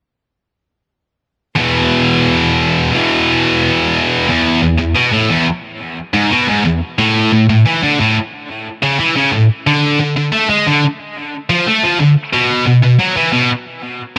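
A dark, lightly reverberant production frames this aggressive, heavy metal passage at 179 BPM in straight 4/4, tuned to A4 = 439 Hz and cut from a longer piece, where a lone scooped, high-gain electric guitar, bright, distorted, picked and double-tracked with tape echo, sits up front from 1.6 s to 13.5 s, moving from E5 and E through A5 and D5 to B5.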